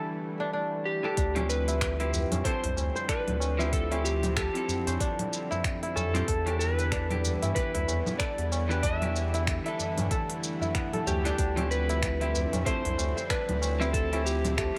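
This mystical, meditative organic downtempo excerpt opens with a clean, hollow-bodied electric guitar under a filter sweep, joined by a faint bronze singing bowl with slow beating, a string-like drone set in the background, and a fingerpicked kora playing crisp, ringing arpeggios with delay. At 0.9 seconds a slightly broken-up slide guitar takes the melody, its line trailing through tape echo, and at 1.2 seconds the groove arrives at 94 BPM in 4/4 with a gentle 16th-note swing. A round, dark analog bass anchors the low end alongside a soft electronic kick, while an organic electronic kit adds congas, finger snaps, shaker and crisp hats, and a low-tuned tabla sits quietly behind them. The drone and the compressed rhythm guitar both breathe with sidechain pumping, the drone's tense tone shimmering with vibrato and its own reverb. The harmony in D dorian rocks slowly between Em7 and Dm11, all held in a light reverb.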